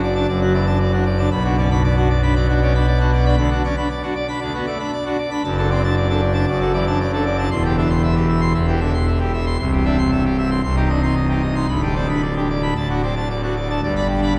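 This classical organ toccata is brilliant and jubilant: a short fragment cut from a longer piece, moving at a steady pace in four with a straight feel. A solo pipe organ plays on full organ from 0.0 to 14.4 seconds, spanning a deep C1 up to C6. Its sound is majestic and up front, with ringing mixtures and a baroque voicing. The harmony moves through D/F# and B minor, settles on C, turns briefly to C minor, then passes through G/D and D before landing on G at 13.8 seconds. A wet cathedral reverb with an RT60 of 5.3 seconds surrounds the instrument, and the listener seems placed further back in the room, so each chord rings on into the vast space.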